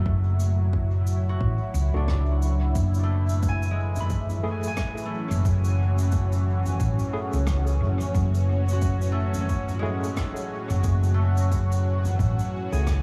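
A light reverb and small-room ambience frame this meditative, deep slice of ambient dub, cut from a longer piece and moving at 89 BPM in 4/4 with a swung sixteenth-note feel in F# minor, resting on an F#m7 chord. Up front, a dark, round and punchy hollow-body short-scale electric bass holds the low end, while a smooth, detuned sawtooth analog pad with a slow attack and chorus sustains chords beneath. A ringing, fingerpicked concert harp plays arpeggios soaked in dub echo, and an overdriven electronic kick gives a deep, layered thump from 0.1 seconds. A distant, roomy soft-mallet kit joins at 0.4 seconds with cabasa, rim clicks and toms, also sent into dub echo. From 1.9 seconds a barky, gritty tine electric piano, with medium tremolo and dub echo and heard through a combo amp, drops stabs in the background.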